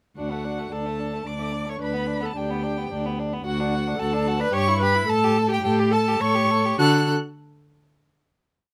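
A woody, up-front cello sets the bass on the beats and sustains low notes beneath a lively, spirited classical-period string quartet piece in 3/4 with rubato, where a distant first violin sings an expressive melody with vibrato and portamento, a rich second violin adds a focused rocking two-note figure and sustained chords, and a clear, even viola doubles the tune at the octave, all captured dry and close before the final chord arrives at 6.8 seconds.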